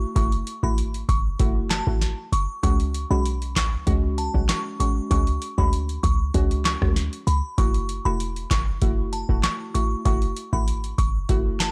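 A booming analog drum machine sits up front in this bouncy, hypnotic dancehall fragment at 97 BPM in F# minor, its deep kick, crisp snare, handclaps, rim clicks and metallic hats carrying a tape-warm character, with a short room on the snare, claps and hats. A punchy, tight 808-style bass with a fast, decaying attack anchors the low end, while a soft, round pluck opens alone at 0.0 s with chorus and sidechain pumping, cycling through F#m7 and C#sus4. From 0.2 s a glassy, crystalline FM bell carries the high melody through chorus, phaser and tape echo, all captured in a gritty, cassette-saturated hardware recording with digital ambience.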